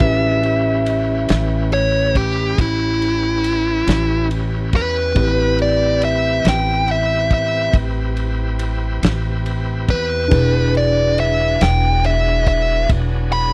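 Rollicking yet laid-back, this slow blues in 12/8 moves at 47 BPM with a straight feel, and this short cut from a longer piece is given over entirely to an electric guitar solo. The dark, smooth lead guitar sits up front, overdriven and picked, with a slapback echo on its lines as it ranges from E4 up to B5 over chords moving from A9 to Am7 at 5.2 seconds and on to E9 at 10.3 seconds. Beneath it, a gritty tine electric piano pushed through a combo amp fills in the accompaniment, while a bright, shouting tonewheel organ holds sustained chords through a slow rotary speaker with a touch of overdrive, sitting furthest back. The pizzicato upright bass is woody and up front with steel strings, and the soul drum kit plays kick, fat snare and dark ride cymbal in a tight, mid-forward sound with a rolled-off top. The whole thing has the dry, close feel of a 1970s studio with little reverb.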